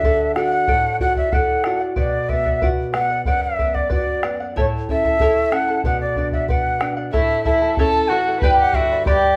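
Earthy and melancholic, this short Andean folk excerpt moves at 93 BPM in a straight 2/4 in B minor, led by an airy, hollow cane quena with vibrato and a soft attack sitting up front. Beneath it, a shimmering fingerpicked charango with double strings and a woody, dark nylon-string guitar on old strings provide accompaniment, while a round, close and dry bombo keeps the pulse. At 7.1 seconds a reedy gut-string violin enters with a smooth-topped second line, and the whole band plays live together in a large studio with moderate reverb.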